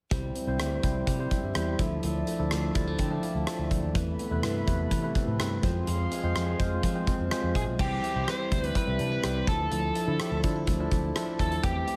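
A straight 4/4 groove at 125 BPM drives this glossy, nostalgic 1980s-style pop excerpt in C major: a huge arena drum kit with a punchy kick and a dark, round, foam-muted picked bass anchor tine electric piano chords and fills, while a bright, direct clean guitar riff with subtle chorus and tape echo sits in the background, a shimmering, mellow pulse-width pad holds slow-attack chords until 7.8 s, and a biting, overdriven lead guitar melody enters up front at 7.6 s.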